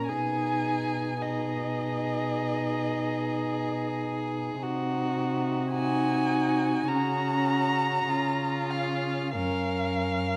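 Set in a moderate scoring-stage reverb with a dusky, mellow production, this short fragment of a longer classical piece is a serene, tender slow romantic movement for string quartet, played rubato with every player muted con sordino throughout. A single veiled, dark-toned violin carries the melody up front with vibrato, while a second violin sits close with a warm, soft-attacked line, the viola supplies gentle accompaniment with light vibrato and a smooth top, and the cello holds the bass, also up front. The harmony drifts from G#m/B through G#7/B# and F#/C# to settle on F#.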